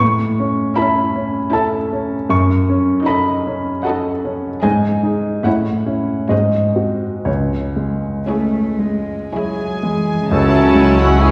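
The piano and cellos begin together: a natural-toned baby grand with short sustain sits up front carrying the melody, while a cello section, bowed sul tasto with light vibrato and soft attack, holds the bass in the background. This brooding, tragic passage from a romantic movement for piano and orchestra is in C# minor and 3/4, moving freely with rubato between 54 and 79 BPM, its harmony passing from A through D#m7b5/F# and G# to A6, G#7 and a close on C#m. At 0.8 seconds a pure, floating violin section adds a second line while intimate violas fill in the accompaniment behind. A second violin section takes a high melody at 9.3 seconds, joined by a mellow, distant clarinet, and at 10.3 seconds an airy silver flute and a clear oboe add lines as a French horn section sustains chords and a rich double bass section deepens the bass. A concert hall reverb places the listener further back in the room, giving the orchestra a wet, spacious glow around the close piano.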